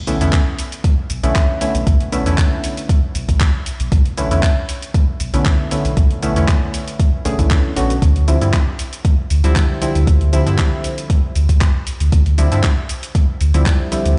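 Heard as if played on a big sound system in a bare room with large studio reverb and a dark top that stops at 10.4 kHz, this smooth, warm deep house excerpt at 117 BPM with a light 16th-note swing sets an up-front, overdriven, deep electronic kick and an overdriven kit of handclaps, hi-hat and shaker, both re-recorded in a small room, under a full, sustained sine sub bass with octave and soft, mellow, evolving chord stabs with chorus, filter sweep and dub echo, the bass and stabs both pumping from the sidechain, as the harmony moves from Bm11 to Dm11 at 8.0 seconds.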